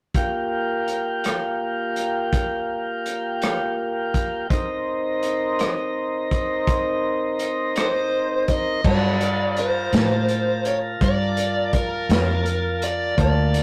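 Slow, mournful blues in 12/8 opens on a smooth tonewheel organ with slow rotary speaker holding sustained chords over a gritty, dark breakbeat drum kit. An overdriven lead guitar enters at 7.8 seconds. Round, foam-muted electric bass and a woody upright piano in the background join at 8.8 seconds. The whole piece has a rough rehearsal-room feel with tube saturation and light reverb.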